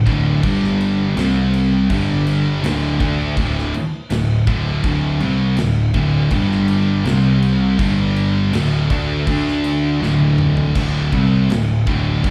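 At a slow, straight 81 BPM in 4/4, a big acoustic rock kit with a punchy kick, medium-tuned snare, toms and bright crash cymbals drives this brooding, heavy stoner and doom metal passage, cut from a longer piece. A growly, overdriven fuzz bass sits up front, sounding from the very start before the rest of the band joins at 0.1 seconds. Two dark, thick fuzz guitars carry the riff from the background, one of them with a slapback echo. A double-tracked, high-gain distorted guitar plays the riff alongside them. The harmony cycles through G5, C5, G5 and D5 twice, and the drums break into a fill at 10.0 seconds. The band sounds like a live gig heard through the venue's PA, wrapped in a small club reverb.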